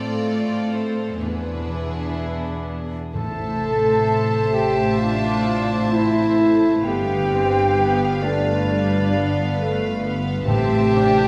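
A rubato pulse near 65 BPM in 4/4 carries this sorrowful, longing cinematic orchestral passage in A minor, cut from a longer piece, where a dark, sul tasto violin section carries the melody over a rich second violin line, floating violas, ringing fingerpicked harp arpeggios and an intimate cello section on the bass. At 3.1 seconds a pure, expressive flute, a warm French horn section holding sustained chords and round, soft-mallet timpani join, followed at 3.2 seconds by a bright clarinet and a close double bass section with light vibrato. A wet scoring-stage reverb gives the ensemble the spacious air of a concert hall.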